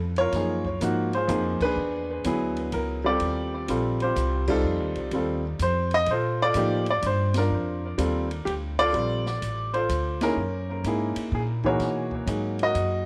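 A woody, thumpy pizzicato upright bass opens this relaxed, warm jazz piano trio excerpt in swung 3/4 at 126 BPM. An intimate, up-front upright piano with audible action noise and a touch of tape echo carries the melody from 0.2 s, over lush harmony such as Gbmaj9, E7 and Bbmaj9. A quieter, natural-sounding acoustic drum kit with dark cymbals, a high-tuned snare and a boomy kick joins with the piano, as recurring band accents punctuate the groove and a new section arrives at 8.9 s, all in a light studio reverb.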